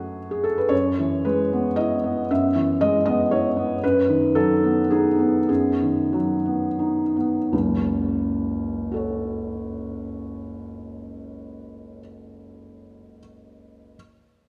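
A felt-muted upright piano opens the recording alone, its soft, mellow tone sitting up front with the quiet clatter of the action audible beneath each note. This is intimate, melancholic neoclassical minimalist piano in F# dorian, moving in a rubato 3/4 whose pulse drifts between 82 and 120 BPM. The harmony rests on an F# bass, moving from F#m to E/F# and then to B/F#, while the playing spans from F#1 up to E5. The music gradually slows from 3.1 to 7.5 seconds, arriving back on F#m as a new passage begins. The thin felt gives the instrument a natural, hushed character, set inside the generous, wet reverb of a church or concert hall. This fragment is cut from a longer piece and lasts about 14 seconds.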